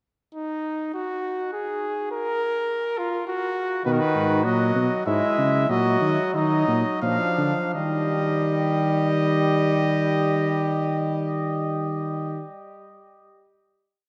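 Classical imitative canzona for brass ensemble in 3/4, solemn and serious, heard as a whole piece in a vast cathedral with a long, wet reverb. A warm, close-miked flugelhorn opens alone at 0.3 seconds, and at 3.9 seconds the clear trumpet takes the melody while a bright trombone with light vibrato and a punchy tuba join as further lines of imitative counterpoint, the trombone sitting distant in the room. The pace slows before the ensemble settles onto a sustained final chord from 7.8 seconds.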